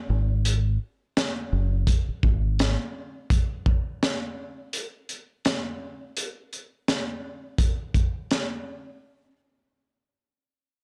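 A deep, round fingered electric bass opens this tough, gritty boom-bap hip-hop excerpt at 0.1 s, sitting up front until it drops out at 2.8 s. A crunchy breakbeat kit joins at 0.5 s with a punchy kick, a high-tuned snare and hi-hat in a swung groove, its dark, saturated sound carrying vintage sampler grit and a rolled-off top, and it plays on until 8.5 s. The dry, gritty hardware recording keeps both parts close and immediate.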